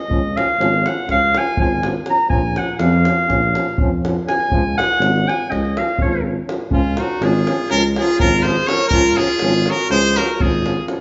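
Heard live in a wet stone room with a capped top end, this exuberant, virtuosic Balkan brass band excerpt in 9/8 at 245 BPM in D-flat major opens with a soft-attacked, roomy clarinet soloing up front over tight davul, a clear euphonium and close-miked trombone in the background, and a dark tuba bass with light vibrato, before a bright, distant trumpet takes the melody at 6.7 seconds.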